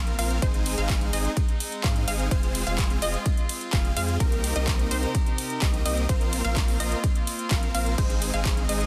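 The sound is dry, dense and heavily limited, with a modern club polish that keeps every layer pressed close together in this short cut from a longer festival progressive house track. A huge, bright supersaw lead carries the euphoric, emotional riff, its detuned sawtooth voices compressed and trailed by delay, while a lush unison pluck sparkles with arpeggios in the background. A saturated sub bass gives a deep, thick foundation, and a rich chamber string section with a reedy, gut-string, period-style tone sustains chords beneath the synths. The lead, pluck, bass and strings pump with sidechain, carving room for a punchy, layered electronic kick that sits up front from 0.4 seconds. A big-room dance drum kit fills out the groove with handclaps, metallic hi-hats, ride and crash cymbals over a progression moving from Ab through Fm, Cm7 and Bbsus2 before returning to Ab.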